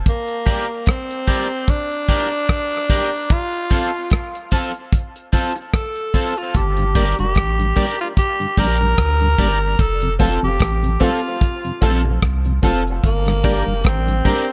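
Dub reggae with a meditative, hypnotic pull, cut from a longer piece and sitting over a slow Gm–F sway with a light swing on the sixteenths. A raspy, gritty tenor saxophone leads up front with scooped notes and dub echo, while a dry, damped 70s drum kit with a tight kick and rim click holds the groove beneath a twangy electric guitar at the edge of break-up, coloured by analog chorus. The round sub bass, heard briefly at the very start, returns at 6.5 seconds alongside a brief conga hit, a dark tonewheel organ turns slowly through its rotary speaker in the background, and a woody upright piano adds echoing stabs from 10.2 seconds, all in a light reverb.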